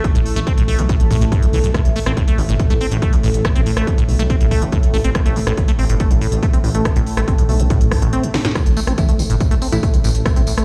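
A heavy, up-front electronic kick and a tape-warm techno kit with cracking snare, smooth hats, rim clicks and tambourine drive this dark peak-time techno cut at 141 BPM in A minor, joined at once by a squelchy, resonant acid saw riff with tape echo, a thick, menacing detuned saw bass with tube saturation, and an evolving analog drone shimmering with chorus and phaser, all pumping against the kick. A short break at 8.1 seconds brings a drum fill, and a crisp, digital wavetable chord stab with tape echo sits in the background from 9.0 to 9.8 seconds. The whole mix sounds like it is blasting through a big sound system in a bare room, with a large studio reverb.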